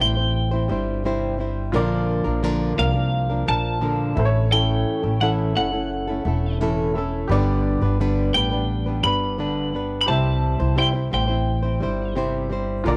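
A light reverb and small-room ambience surround this heartfelt, easy-going acoustic pop excerpt, where a clean, twangy twelve-string electric guitar carries the melody until 12.1 seconds over a fingerpicked flamenco guitar and a woody pizzicato upright bass, both up front, while a brilliant upright piano with short sustain sits in the background as the chords move from C through Bb, A and G before returning to C.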